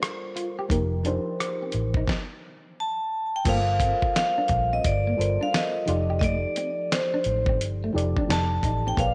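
This sultry, soulful neo-soul R&B excerpt at 87 BPM opens on a warbling, chorused FM electric piano, a slightly broken-up guitar with tremolo in the background, and gritty, compressed sampler-style drums up front with a thumpy kick, before a dark, foam-muted fingered bass enters at 0.7 seconds over swung 16ths and Gm9 to F9sus4 changes; during a stop from 2.1 to 3.5 seconds, a bright, metallic vibraphone melody enters at 2.8 seconds and rings on over Gm11 and F13 in a moderate echo-chamber reverb.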